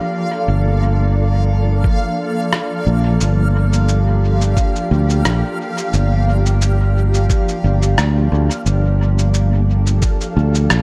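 The groove rests on a loose 4/4 with a gentle swing on the sixteenths, anchored by an electronic kick that enters at 1.8 seconds: sampler-style, compressed, pitched down and thumpy, with a tape-warm, muffled character as if re-recorded in a small room. Shortly after, an electronic rim click and cabasa join in the same lo-fi treatment, trailed by dub echo. This hazy, meditative ambient dub passage, cut from a longer piece, opens on a granular cloud pad holding sustained Bbmaj7/G chords, blurred and full-bodied with a slow attack, a long release and its own reverb. Above it, a reversed, detuned texture swells on a high F, dreamy and bright, with a soft attack and long tail. A fingered electric bass arrives at 0.5 seconds, dark, round and punchy, sitting up front beside the kick, while a light digital ambience binds the whole mix together.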